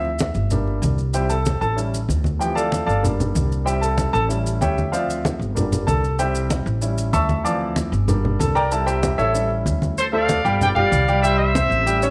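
A moderate echo-chamber reverb gives this passionate, fiery salsa cut a studio sheen, with a clear, polished baby grand piano up front taking a solo over a cycling Dm7–Gm–C–A7 progression. Woody pizzicato upright bass, thick-skinned, low-tuned congas set back in the background, and grainy, dry maracas from 0.2 seconds fill out the groove. At 10.0 seconds a punchy, vintage-toned trumpet section bursts in up front with a tight, bright, vibrato-laced melody.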